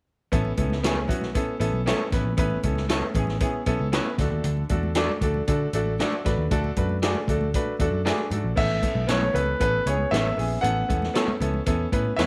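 A clear, intimate grand piano takes the melody at 8.6 seconds in this joyful, uptempo 1960s-style soul excerpt at 116 BPM in A major, moving from Aadd9 to D and back. Beneath it, a woody upright piano with audible action noise accompanies throughout, a dark, foam-muted electric bass holds the low end, and a roomy big-band drum kit with a boomy kick plays crash, hi-hat, kick and snare. A slightly broken-up, lo-fi guitar through a small old amp adds harmonic-tremolo stabs from 0.8 seconds, while very quiet, soft-handed congas and light small-room reverb round out the sound.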